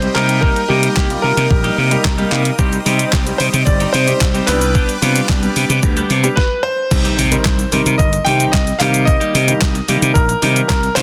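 A clear baby grand piano carries the melody with a touch of delay over an intimate concert grand whose deep, long-sustaining chords pump against the beat, and a grand piano fill arrives at 1.8 seconds in this energetic, bittersweet dance-pop excerpt. A growly, overdriven slap bass and a thumpy, detuned 8-bit drum machine with handclaps, shaker, hi-hat and crash sit up front, while a twangy clean guitar riff and huge, lush supersaw chords with phaser stay in the background. The supersaw chords drop out at 6.4 seconds, and a background impact arrives at 7.0 seconds as the music shifts into a new section, all within a dense, heavily limited mix.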